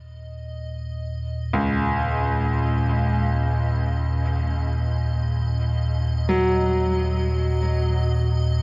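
In free time, this desolate, unsettling ambient excerpt opens on an icy, crystalline glass pad fading in high above a deep, ominous, rumbling drone coloured by lush chorus, before a clear baby grand piano enters at 1.5 seconds with low arpeggios trailed by delay and shimmer reverb, all set in a huge, wet reverberant space.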